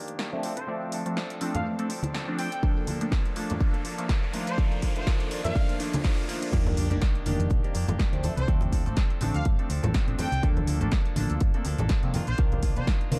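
Filtered disco house at 123 BPM in F mixolydian, feel-good and joyful, with a swung 16th groove: a round, hollow-body fingered bass, a twangy clean guitar riff, a detuned sawtooth polysynth comp with chorus and phaser, and a brilliant trumpet section carrying the vibrato-laced melody through tape echo, all pumping under sidechain and low-pass filtering. An overdriven analog drum machine supplies snare, hats and crash, while close, dry maracas and congas ring alongside and a background riser builds through the filter sweep. At 6.5 seconds the track drops on an impact and a sub drop, the punchy layered electronic kick (in from 2.6 seconds) sits up front, and the chords move from Dm7 through a rootless Gm9 to Cm11 in a dark production with light reverb.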